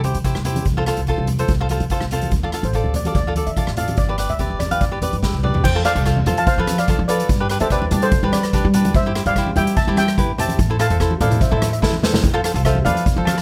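A shimmering, metallic steel pan carries the lead from 2.5 seconds, played with medium rubber sticks and captured close and dry, over a festive, bouncy calypso groove cut from a longer piece. Crisp picked cavaquinho, a woody, thumpy pizzicato upright bass on gut strings and an up-front street-band drum kit with a boomy kick and dark cymbals drive the straight 4/4 feel, while bright, low-tuned congas played with soft hands sit in the background. The chords move from C through F, Dm and G into a second section touching Am, with drum fills at 5.2 and 11.8 seconds, all in a close, detailed sound with light reverb.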